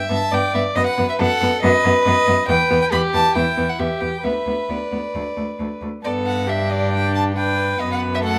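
The first violin stands out, close and up front with a rich, reedy gut-string tone as it carries the melody high in its range from the opening moment. This is a quick, lively and cheerful classical-period movement for string quartet in G major, moving at 137 BPM in a straight 4/4, and it is cut from a longer piece. Beneath it, the second violin plays a supporting line that sounds more distant and nasal, while the viola fills in the accompaniment with a warm, period-style sound. The cello anchors the bass, placed up front with its own full, bowed gut-string voice. The harmony moves from G through E minor and a D-centred passage before returning to G around 6.0 seconds. A moderate stone-room reverb lends the quartet a resonant, airy space.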